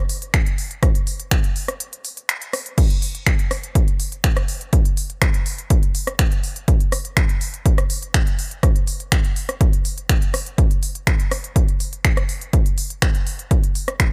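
Driving and dramatic, this straight 4/4 techno cut at 123 BPM pairs a punchy analog electronic kick drum entering at 0.3 seconds with a layered, smooth-hatted deep house drum kit of crash cymbal, finger snaps, hi-hat and rim click, its hats and cymbals pumping under sidechain, both parts up front, dry and re-recorded in a small room, with a brief break from 1.8 to 2.8 seconds.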